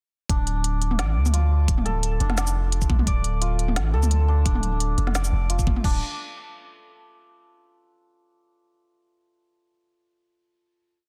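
A sparse, slightly swung half-time beat at 173 BPM drives this heavy, tense half-time drum and bass piece in D minor, where a knocking, layered electronic kick and a kit of woody snare, smooth hats, shaker, low tom and crash, both tape-warmed, sit under deep, long, gliding sine 808-style bass notes on a single Dm chord, while a bright, shimmering hammered santur repeats a 12-step arpeggio loop that drifts against the bar, roughened by vintage 12-bit sampler grit and digital delay, until the drop ends at 5.8 s and the santur rings on, alone once the bass fades at 6.0 s, to 6.9 s in a dense, heavily limited modern master.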